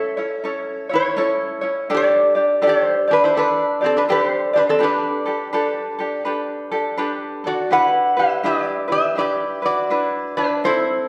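Hawaiian music, dreamy and relaxed, moves at an easy 82 BPM in 4/4 with a gentle swing on the eighth notes in this short excerpt cut from a longer piece. A metal-body resonator slide guitar carries the melody from start to finish, its slide tone metallic and nasal, plucked with fingerpicks and placed up front. Beneath it, a tenor ukulele supplies fingerpicked accompaniment throughout, light in touch and equally close. The harmony drifts from A through Dsus4 and Gadd9 before settling on Em7 near 7.7 seconds. A lush recital hall reverb surrounds the pair, and the listener seems to sit further back in the room, which adds to the hazy, unhurried atmosphere.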